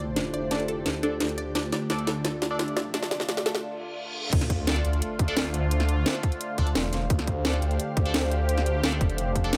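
Lightly reverberant and mechanically futuristic, this excerpt of dark technical drum and bass in D minor at 173 BPM builds over a swirling, overdriven phased saw bass, a bright resonant pad with a filter swell, a mellow ethereal airy pad in the background, a punchy unison pluck arpeggio that stops at 3.5 seconds, nasal band-passed chord stabs, and an up-front drum kit with a cracking snare and bright hats, before a reverse cymbal and sub drop lead into the 4.3-second drop, where a tight, overdriven electronic kick enters.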